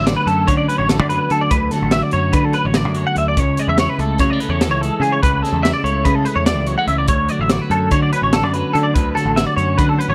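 Twelve-string electric guitar, a twangy clean electric guitar playing chorused arpeggios high above it, and a growling overdriven picked bass open this short, bright, playful cut of math rock and midwest emo, with a crisp fusion drum kit joining at 0.1 seconds. In a brisk 9/8 at 290 BPM counted in eighths, the parts move through Dmaj7, Amaj7/C# and back to Dmaj7 in D lydian. The compressed twelve-string adds a warm layer beneath the up-front arpeggiated guitar, while the punchy kick and high-tuned snare pump in a small room.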